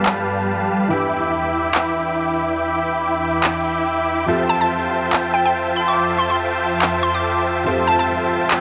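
The fragment opens on a lush, bright future bass bed at 142 BPM in a swung half-time feel, where a soft, breathy pad with a slow attack and long release sustains chords under a felt-muted upright piano whose mellow, intimate tone carries audible action noise and a delay. A barely audible downlifter trails through the first 0.9 seconds, and electronic handclaps, layered and up front, come in at 0.1 seconds with low-pass filtering on the hats and snare. Carrying the riff is a dense, compressed supersaw, thick and detuned with a sub octave and vibrato, sitting forward in the mix behind a low-pass filter and delay. The harmony moves from G7 to Em7 and settles on Fmaj7 in F lydian, while a filter sweep on an analog synth pad runs throughout. At 4.5 seconds a glassy, crystalline wavetable pluck takes the melody high in its register, decaying through chorus and delay, all set in a huge ambient reverb with a long tail.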